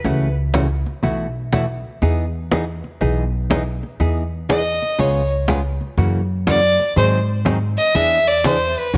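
A moderate echo-chamber reverb gives this short country and western swing cut a roomy glow, while the guitar, bass and fiddle stay up front. The mood is down-home and playful, with a swung eighth-note feel in four. A dark, clean, compressed hollow-body electric guitar carries the picked accompaniment throughout, underpinned by a woody pizzicato upright bass with steel strings and a close cajon struck with hard hands that adds faint snares. The chords move from F#m7/C# through B7sus4 to Emaj7, then pass through C#7, F#7 and G#7 before landing on E7. At 4.5 s a single bowed fiddle enters for a solo, its clear, earthy tone touched with light vibrato and sitting prominently over the band.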